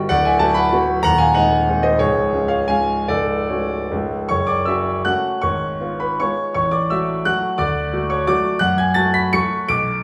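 A classical, romantic triple-time dance in 3/4 for solo piano, this brief cut from a longer piece moves in F# minor with dotted rhythms and a rubato feel, its tempo ranging from 144 to 206 BPM. The mood is nostalgic and capricious, the pulse pulling and relaxing as the harmony passes from Bm/D through G#7/D# and C# to F#m/C#. A concert grand plays alone throughout the 10 seconds, spanning C#1 to D7 with a polished, present tone, deep bass and long sustain, placed up front. A new section begins at 4.3 s on F#m, turning through C#7/G#, F#m/A and D before settling back on F#m. A moderate recital hall reverb lends the clear instrument a sense of space, touched by a small room ambience.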